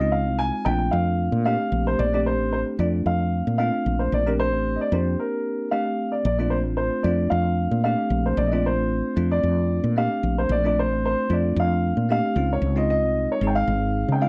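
A dry, close 1970s-style studio sound frames this slick, soaring jazz passage in Bb major at 113 BPM, with a light sixteenth-note swing. A dark, mellow concert grand carries the melody up front with a slapback echo and long sustain, while a bell-like tine electric piano, clean under a lush chorus, supplies the accompaniment and a woody fretless electric bass sits round and punchy beneath them. The harmony moves from Dbmaj9 to Bbmaj9, and a brief break at 5.2 s splits this cut from a longer piece.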